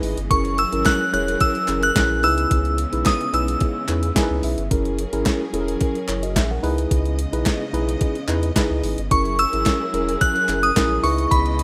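Early-eighties boogie funk with a danceable, feel-good groove, built on a crisp, overdriven 8-bit drum machine with a thumpy kick up front, a round sine sub bass, a worn, slightly out-of-tune tine electric piano that adds a brief fill at 3.9 seconds, lush vibrato strings holding sustained chords, and background group handclaps, while a glassy, crystalline FM synth bell carries the chorused, slapback-echoed melody in two phrases over the alternating F#9 and C#m9 chords, all in a dry, rough home-demo mix.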